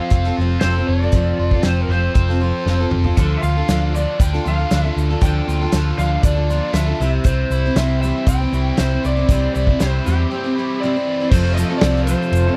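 A dry, close 1970s-style studio sound frames this dusty, reflective folk and heartland rock excerpt at 118 BPM in a straight 4/4, where a punchy, up-front country drum kit and a round, dark hollow-body bass anchor a picked dreadnought acoustic guitar, a biting double-tracked overdriven riff guitar and a lo-fi lead guitar from a small cranked amp singing the melody over F, Dm and C, with a grainy tube shaker joining after the drum fill at 3.2 seconds, a break at 10.3 seconds, and a reedy, very quiet accordion holding chords from 11.3 seconds as the harmony returns to F.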